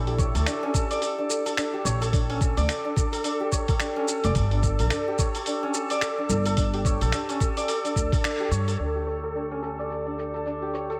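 A bright, shimmering santur plays hammered arpeggios up front, softened by a low-pass filter and echoed by digital delay, over a woody pizzicato upright bass in this hypnotic, warm organic downtempo excerpt, moving from Bbmaj7 to G5. A gritty, compressed sampler-style kit of finger snaps, hi-hat and shaker, with filtered, dusty tops, adds a swung sixteenth-note feel, while a thumpy, tape-warm electronic kick runs until a band accent at 8.2 seconds. At 8.8 seconds the harmony shifts to D5 and a filter sweep moves across the santur, all set in a light, small-room reverb.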